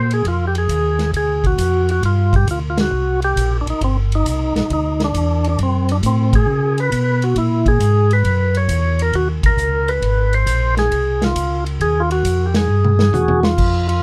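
A swinging 135 BPM groove in 4/4 drives this greasy soul jazz organ trio, where a percussive, key-clicking tonewheel organ carries the melody through a slow rotary speaker over a mellow, round, dark organ bass line, while a punchy vintage drum kit with a medium-tuned snare sits in a small, pumping booth; the whole trio hits band accents at 2.7, 6.2 and 9.4 seconds before a drum fill from 12.7 seconds closes this cut from a longer piece.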